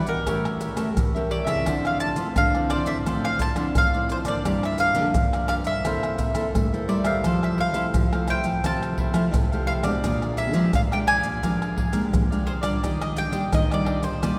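Over a straight four-beat samba and choro groove, soft-handed maracas, pandeiro, tamborim and a deep surdo sit close and dry up front while a bright, woody double-string mandolin carries the sunny, festive melody, supported by a crisp picked cavaquinho, a full-bodied fingerpicked nylon-string guitar and a second classical nylon-string guitar holding the bass, all within the lingering wash of a church-like hall through chords moving from A7b9 to Ebmaj9 in this short cut from a longer piece.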